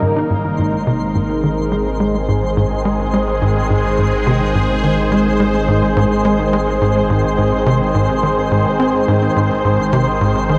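Luminous and expansive, this ambient slice of sequencer-driven space music moves in a straight 4/4 and rests on a single Ab chord throughout, cut from a longer piece. A sweeping, resonant pad sits up front with sustained chords, its detuned sawtooth layers and airy noise evolving under a filter swell, slow attack and chorus. Beneath it, a tight, punchy sequencer bass drives a nasal, plucked riff, its decaying notes thickened by lush chorus and analog delay. A round sine sub bass holds a deep, steady low Ab, while from 0.4 seconds a faint granular texture adds sparkling FM shimmer an octave up, bathed in its own reverb. The whole mix is soaked in a huge, wet ambient reverb with a 7.6-second tail, giving the short passage a vast, floating space.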